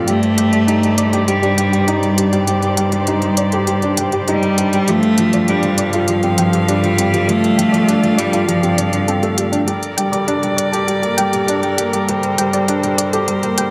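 A hypnotic, melancholic piano and strings electronica piece opens with a chamber string quartet holding bowed chords, a lush cello section carrying the bass with tube saturation, a soft, round synth pluck tracing arpeggios with chorus and delay in the background, and an intimate felt-muted upright piano riff, up front and echoing with delay. Crisp hats and toms from a tape-toned electronic kit join almost at once, alongside a single, smooth solo cello singing a vibrato melody through delay. The solo melody falls away at 9.3 seconds and the bass section at 9.7 seconds as the piece builds toward its close, all set in a lush hall reverb.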